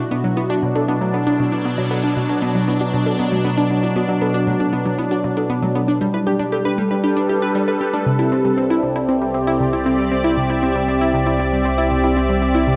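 A straight 4/4 pulse at 117 BPM drives this cosmic, expansive piece of sequencer-driven space music, cut from a longer work. Up front, an airy, evolving pad with a resonant filter swell holds sustained chords, moving from Bm7 to G before settling into C major with a Cmaj7 at 8.1 seconds. A bright, round analog pluck with a fast attack plays a decaying riff, also up front and treated with chorus and analog delay. Behind it, a warbling, lo-fi pluck spins arpeggios in the background until 8.0 seconds. From 9.0 seconds an analog drone sustains a low C in the bass, its pulse-width modulation coloured by chorus and phaser. A wet plate reverb and a dark, warm production give the music a spacious, enveloping glow.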